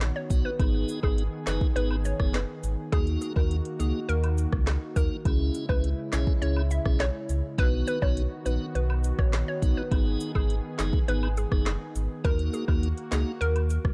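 Sultry and bouncy, this dancehall groove rides a straight 4/4 feel, cut from a longer piece, with an electronic afro-pop drum kit up front pairing a deep kick and woody snare with metallic hats, handclaps and rim clicks, while a full sine-and-triangle sub bass with octave sits alongside and woodblock and cabasa add saturated acoustic texture in the background. A hollow, detuned square-wave pluck carries the melody from 0.2 seconds with chorus and tape echo, a piping tonewheel organ with key click and slow rotary speaker supplies accompaniment, and a smooth, warbling vintage analog pad holds sustained chords with subtle chorus and sidechain pumping. The production is dark and warm, set in a digital ambience, with chords moving through B, G#m, D#m and C#m.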